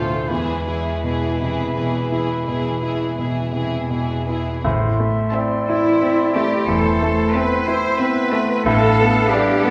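A slow, rubato 12/8 pulse of roughly 53-62 dotted-quarter beats per minute carries this passionate, tragic orchestral passage in A minor, cut from a longer piece. A clear, polished baby grand piano sits up front with the melody, joined on the melody by a lush violin section with smooth vibrato. A second violin section, an oboe and a dark, roomy French horn section holding sustained chords stay in the background. A rich, focused cello section anchors the bass up front, while a distant, very quiet viola section fills in the accompaniment. At 4.6 s the harmony moves from E to A minor as a woody double bass section enters beneath, and at 4.7 s a pure, metallic concert flute and a soft clarinet add second lines while timpani, struck with hard mallets, sound briefly until 5.6 s. The ensemble sits in a wet recital-hall reverb, and the passage closes on a Bm7b5 over A.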